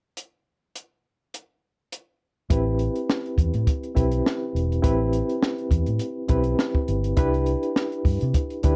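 A bright, reedy electric piano with a fast tremolo supplies the accompaniment in this romantic slice of lush 1970s-style soul at 103 BPM, entering at 2.5 seconds over an Am9 chord that moves to Cmaj7 at 7.2 seconds. Before that, a compact cocktail drum kit plays alone, dark and smooth with a high-tuned snare and punchy kick, swinging lightly on the sixteenths. A round, foam-muted fingered electric bass joins with the piano, and the whole sits dry and close, every part up front in a vintage studio sound.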